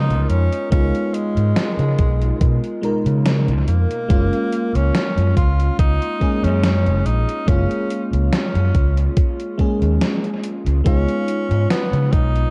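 A faded, woozy cassette-tape haze with light reverb and an echo-heavy mix frames this vaporwave excerpt in F# major at 71 BPM with a gentle 16th-note swing, where a bright, vibrato-laden tenor saxophone carries a soft-attack jazz melody through tape echo over a lush, dreamy FM electric piano with a soft pad layer, analog chorus and dub echo, an up-front, amped and overdriven fingered electric bass, a gated 80s digital drum machine playing hi-hat and gated-reverb snare with overdrive and dub echo, and a thumpy, overdriven electronic kick entering at 0.7 seconds, all moving from C#9 to F#maj7 at 4.1 seconds and back to C#9 at 10.9 seconds.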